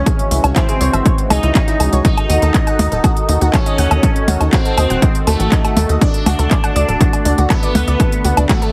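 Melodic techno at 121 BPM in a straight 4/4, this short excerpt from a longer piece feels dramatic and melancholic as it moves from C#m to D#dim and settles on D. A juicy, resonant polysynth carries the melody with filter sweeps, chorus, phaser and dub echo, while an airy, dreamy lead sits further back as a second line, its dark sine tone touched with vibrato. Beneath them a lush, nasal unison pad holds sustained chords with a slow attack and long release, and a round analog pluck spins arpeggios in the background, colored by a moving notch and cassette-tape grit. Up front, a tight sawtooth sequencer bass drives the low end with fast, decaying notes, paired with a punchy, tape-warmed kick from 0.1 seconds. A layered techno kit adds handclaps, smooth hats, woodblock and percussion blips, the hats and percussion pumping against the kick, all set in light reverb under a heavily compressed, radio-like sheen.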